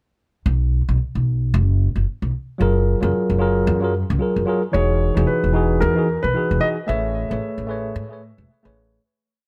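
A woody, thumpy pizzicato upright bass opens this blissful sunset chillout piece at 0.5 s, playing a dotted-rhythm line in B major at 112 BPM with a gentle 16th-note swing, in a small-room ambience. A clean tine electric piano joins at 2.6 s with spread, dotted-rhythm chords touched by delay, moving through F#maj9, Emaj9 and Amaj9. At 4.7 s a dark, mellow concert grand adds a delayed motif-based melody in song-like phrases, and the whole piece fades out toward its close.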